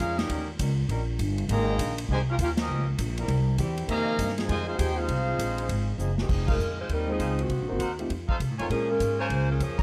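This swinging, sultry big band jazz excerpt in F minor opens with a brilliant, vintage-toned trumpet section carrying the melody over a trombone section's second line, while a woody, growly pizzicato upright bass sits up front and a hall-sounding drum kit with a punchy kick swings hard at 200 BPM. A second group of trombones holds clear sustained chords underneath, light vibrato colours the horns, and the band hits accents as the harmony moves through Eb7, Abmaj7, Gm7b5, C7 and Fm7. A short drum fill at 6.0 seconds leads into a new section where a smooth-topped, tight saxophone section takes over the melody. A soft-attack trumpet section adds stabs. A warm, intimate grand piano joins at 7.1 seconds with audible action noise and a long sustain, over chords of Cm7b5, F7 and Bbm7, all set in light reverb.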